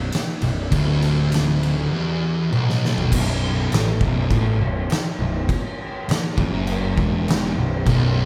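Sludgy and brooding, this short cut of stoner and doom metal crawls at 101 BPM in B minor, with two thick fuzz guitars grinding out low riffs, one dark and one warmer, the second dropping out at 3.1 seconds before returning near the end over a growly, bright overdriven picked bass. An oversized low-tuned drum kit sits up front with a punchy kick, fat snare, dark cymbals and toms, rolling through a fill from 2.5 seconds that shifts the riff from B minor to a B power chord. The band plays live in one large studio room, its moderate reverb and pumping, stone-like ambience thickening the whole sound.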